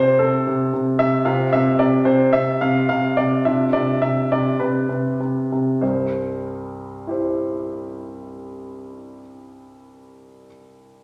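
Graceful and playful, this excerpt of a classical-period piano sonatina in C major, tuned to A4 = 442 Hz, unfolds in a rubato 4/4 at 92-113 BPM. A clear, intimate solo grand piano sits up front with audible action noise, spanning C2 to F5 and slowing from 0.2 to 5.8 seconds before a new section settles on C, all set in a wet stone room reverb.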